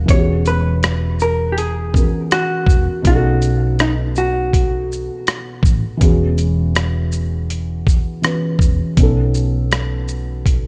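A muted, felt-softened upright piano and a round, dark hollow-body bass open this nostalgic, cosy lo-fi hip hop excerpt at 81 BPM with a swung 4/4 feel, joined at 0.1 seconds by a gritty, sampler-style soul drum kit with a thumpy kick, rim click, hi-hat and shaker up front, while a clean, picked hollow-body jazz guitar carries a filtered melody until 5.6 seconds over alternating E69 and B7 chords, all wrapped in light reverb and cassette tape character.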